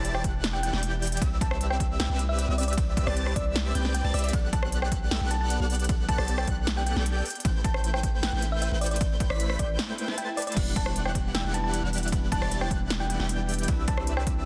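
Future bass with a lush, emotional, half-time feel, built on huge detuned supersaw chords with cassette-tape colour, a deep sine 808-style bass up front, punchy overdriven drums and kick, a round, warbling thumb-piano-like pluck with tape echo, and a soft, dreamy lead arpeggiating in the background, the synths and bass pumping against the kick throughout, with a short break at 9.8 seconds, where a background swell ushers in a bell-like tine electric piano with 12-bit sampler grit, in a dense, heavily limited, fairly dry mix.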